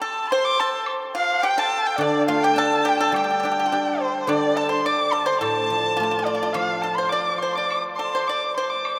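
Drenched in a vast, echoing cathedral reverb, this tender, wistful Chinese chamber excerpt unfolds in free rubato as an up-front erhu sings the melody with vibrato and portamento, a bright, airy dizi with a buzzing membrane plays softly in the background, a dry, percussive pipa adds a second line, a very quiet woodblock enters at 0.9 seconds, and a ringing, silvery guzheng joins in accompaniment at 2.0 seconds.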